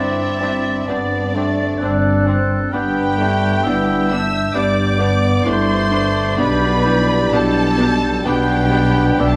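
Bathed in moderate concert-hall reverb, this serene orchestral excerpt in G major drifts at a rubato 65 BPM in 4/4, with a distant, lush violin section singing the melody over a smooth second violin line, a clear oboe, a dark clarinet, airy hollow flutes and, from 0.4 seconds, a rich viola section, while a soft-attacked bassoon and mellow French horns hold the middle and an even cello section and expressive double basses with portamento anchor the bass.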